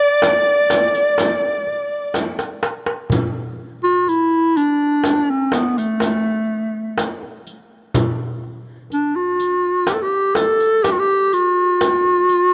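Arabic maqam ensemble music in a passionate, stately 10/8, led by a breathy, up-front clarinet playing a jazz-style solo with vibrato, subtones and scooped notes, while a biting, bowed violin section and a barely audible, woody fretless oud sound only until 2.1 seconds, alongside clay-shelled darbuka, a deep, distant frame drum and a riq's bright jingles, with a drum fill and light small-room reverb.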